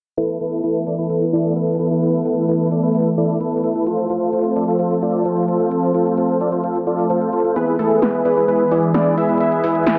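This festival progressive house excerpt in A minor feels anthemic and emotional at 130 BPM. From 0.2 s, a huge, detuned supersaw riff with low-pass filtering and dub echo sits over an electronic big-room kit of hi-hat and punchy snare. A lush, slow-attack pad colored by chorus and phaser holds sustained chords through Asus2, F and E. At 7.6 s, a catchy, plucky unison lead enters with its own dub echo, all set in a moderate hall reverb while a filter sweep runs through the passage.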